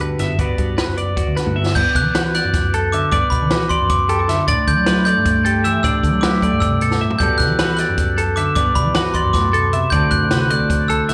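Math rock and midwest emo in G major, wistful and playful, moving briskly at 308 eighth-note beats per minute in a straight 7/8 as a short cut from a longer live club performance heard through the venue's PA. A dark, fingered clean electric guitar and a round, hollow-body picked bass hold down the harmony through chords like Gmaj7, A7sus4 and D7, while a twangy, compressed twelve-string electric guitar spins bright arpeggios with subtle chorus and slapback echo, and a compact cocktail kit with a high-tuned snare and punchy kick sits up front, dropping fills at 1.5 and 6.9 seconds. At 1.8 seconds a sparkling, bell-like glockenspiel struck with brass mallets enters on the melody, ringing forward in the mix with slapback echo and digital delay.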